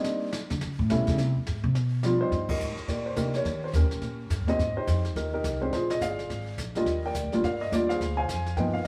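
A dark, mellow upright piano carries the melody up front, its slightly detuned tone and audible action noise giving this cut from a longer piece an intimate, smoky character. It's a swinging jazz piano trio in C minor at a brisk 211 BPM, with a light swing feel on the eighth notes. The pizzicato upright bass enters at 0.5 seconds with a woody, steel-string sound and takes a solo spot through 2.3 seconds, over a quick turnaround starting on Cm9. From there the harmony moves through Eb7, Abmaj9 and Ebmaj9, with a band accent at 2.5 seconds. Sitting lower in the mix, the brush kit blends brushed snare, hi-hat, ride, boomy kick and dark cymbals. A moderate plate reverb and small-room ambience place the trio a little further back in the space.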